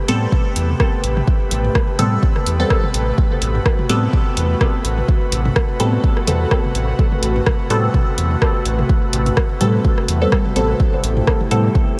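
A swung 4/4 groove at 126 BPM drives this hazy, nocturnal dub techno excerpt in A dorian, resting on a single Am9 chord, with an overdriven, deep electronic kick up front and a deep house kit of hi-hat and rim click carrying its own grit and dub echo, while very quiet, tape-tinged electronic toms sit beneath. A round, dark analog bass pumps against the sidechain, and muted, detuned chord stabs with a filter pluck and moving notch decay through phaser and dub echo. Over them, an airy, breathy pad holds sustained chords with chorus and a slow attack, all bathed in a huge ambient reverb of 5.9 s that leaves the mix dreamy and soaked.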